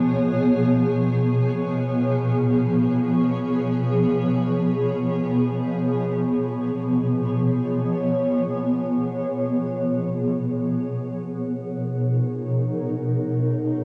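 A home cassette recording with a short, wet booth ambience frames this serene, warm ambient excerpt in free time, tuned to A4 = 438 Hz. An up-front granular cloud pad holds cloudy, detuned sustained chords throughout, its slow attacks and long releases blurred further by built-in reverb, moving from a rootless A#m7/B to Bmaj7 at 10.9 seconds as a filter sweep passes over it. At that same moment a faint, glassy glass harmonica enters in the background on a single high F#5, its pure, airy tone gently beating until the fragment ends at 13.8 seconds.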